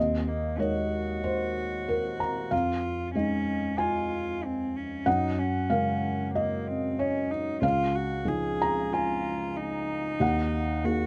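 A felt-muted upright piano, soft, dark and vintage in tone with its action noise audible up close, carries the accompaniment of this intimate, tender neoclassical excerpt in Db major, moving at a rubato 94 BPM in 4/4. A single bowed cello, played sul tasto with a soft attack and a pure, floating sound, supplies a second line between Bb3 and Ab4, sitting slightly beneath the piano. The harmony drifts through Absus2/Eb, Dbadd9/F, Gbadd9 and Dbadd9 before returning to Absus2/Eb at 10.2 seconds, all captured by close, detailed microphones in a nearly dry room.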